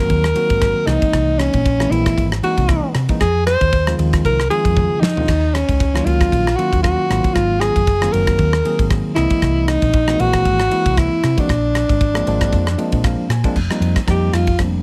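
A close, dry sound with little reverb frames this short, driving cut of slick electric jazz fusion in 4/4, carried by a light sixteenth-note swing. A breathy alto saxophone sits up front with the melody, its clear, jazz-style tone colored by vibrato, soft attacks and scooped notes, and a slapback echo trails its phrases before it takes a brief solo from 13.6 seconds. Beneath it, a bell-like tine electric piano supplies bright, clean accompaniment and steps forward with a fill from 12.0 to 13.6 seconds. A dark, round hollow-body short-scale electric bass, played with the fingers through an amp, anchors the low end. A modern acoustic drum kit with a tight kick and medium-tuned snare sits up front in a small room, working across ride, crash, rim clicks and toms, with a quick fill around 4.8 seconds. The harmony moves through rich extended chords such as Ab9, C7alt, Fm7 and Ebm9 before settling on an F7sus4.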